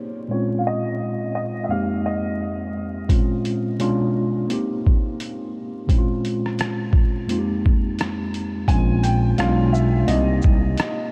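Nostalgic and hazy, this lo-fi hip hop piece at 86 BPM in Bb dorian rests on a worn, slightly out-of-tune tine electric piano softened by a low-pass filter, while a woody, slightly detuned upright piano melody floats in lush chorus, a gritty, pitched-down boom bap sampler-style kit with thumpy kick, hi-hat, rim click and shaker arrives at 3.1 s, and a growling, thick FM bass joins at 8.7 s, inside a dreamy mix soaked in huge ambient reverb and vinyl crackle.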